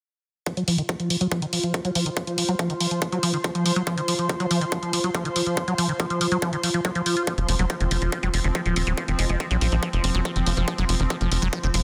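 A squelchy, resonant liquid acid bass leads this psychedelic trance excerpt, its riff running under a filter sweep with phaser, dub echo and sidechain pumping at 141 BPM in straight 4/4. The mood is alien and psychedelic, built over an F5 chord and tuned slightly low to A4 = 438 Hz. A tight, up-front electronic kick drum with a high-pass filter and bright layered hi-hats drive the groove from the start, both set in studio reverb. An ethereal, airy pad with ensemble chorus and a slow attack floats above from 0.8 seconds, breathing with the sidechain. From 7.3 seconds a pulsing gated texture of detuned, chorused chords enters, followed at 7.4 seconds by a punchy sequencer bass with tube saturation that adds low drive, and from 8.2 seconds by a very quiet, juicy blip pluck with ring modulation. The mix sits in light digital ambience under a dense, heavily limited modern master.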